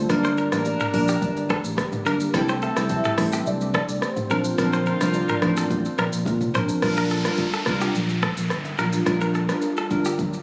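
A straight 4/4 afrobeats groove at 107 BPM drives this joyful, sunny clip, cut from a longer piece. It rests on an electronic afro-pop drum kit with a deep kick, smooth hats, rim clicks, shaker and toms, alongside very quiet congas and bongos played with soft hands. A punchy fingered electric bass anchors the low end, while a glassy, crystalline wavetable pluck with chorus and a moving notch filter carries the accompaniment, and a bright, twangy clean electric guitar plays a compressed riff touched with delay. Up top, a velvety, dark synth lead sings the melody through chorus and delay, joined by a pop-style horn section with light vibrato in the background and a hollow, flute-like pad sustaining soft chords. The harmony moves through Gm, C6 and Bbadd9 until a drum fill at 6.3 seconds; the lead, horns and pad then fall away, and an electronic downlifter enters at 6.8 seconds over Bb6. Light reverb and the ambience of a phone recording in a studio room lend the sound a roomy character.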